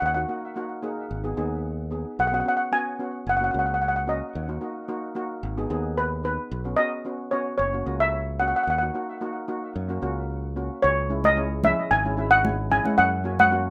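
With light reverb and the rough feel of a home demo mix, this sunny, bouncy calypso excerpt, gently swung on the sixteenths, sets an up-front, dark and smooth lead steel pan melody with delay over dry, full, close-miked cello pans struck with medium rubber sticks and a bright, growly fingered electric bass, before high-tuned, thick-skinned congas arrive in the background at 11.2 seconds, shortly after the harmony shifts into a new section.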